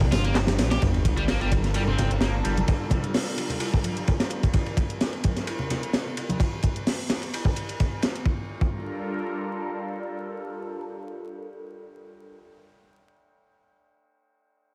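Funky and energetic, this short breakbeat cut from a longer piece runs at 129 BPM in G minor with a light swing, opening on Csus2 before settling on Gm7 at 0.8 seconds. An up-front, gritty breakbeat kit with a punchy kick, high-tuned snare and dark cymbals drives it alongside a layered house kit of bright hats and handclaps, background congas with tape echo, a rumbling detuned saw bass and a double-tracked high-gain guitar riff; both bass and guitar get a filter sweep under an impact and sub drop from 0.8 to 2.7 seconds. A swirling, airy phased analog pad with chorus and sidechain pumping sustains chords through to 12.4 seconds, all set in small-room ambience with an echo-heavy sheen and vinyl crackle.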